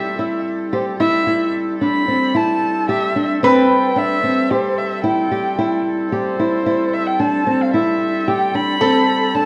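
Heard through a worn, warbling cassette tape with drifting pitch, this short cut from a longer piece sits in the reverberant air of a recital hall, giving it a faded, dreamlike haze. It is a pensive, hypnotic contemporary instrumental in A minor, moving at 111 BPM in a straight 5/4 that hangs on a single Am7 chord. Up front, a dark, bowed solo violin carries the melody with expressive vibrato, soft attacks and gliding portamento, its top end smooth. Beside it, a lap resonator guitar played with fingerpicks and slide adds a metallic, nasal second line, while a small, fingerpicked nylon-string guitar, also close and present, spins out arpeggios. Underneath, a warm woodwind section in classical style holds tight, sustained chords with light vibrato, and all four parts play together through the full 9.5 seconds.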